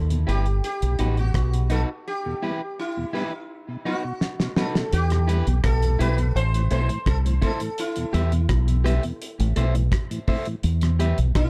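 A dark, dry production carries this serious, meditative roots reggae excerpt at 84 BPM in E minor, where a deep, round dub bass sits up front beside a cloth-damped, thuddy drum kit with a fat snare and tight kick, a mellow tonewheel organ with chorus vibrato and slow rotary speaker, a buzzing, shimmering sitar melody with tape echo, and an electric guitar at the edge of break-up washed in tape echo and plate reverb, with a break from 2.1 s and a drum fill leading into a new section at 4.9 s.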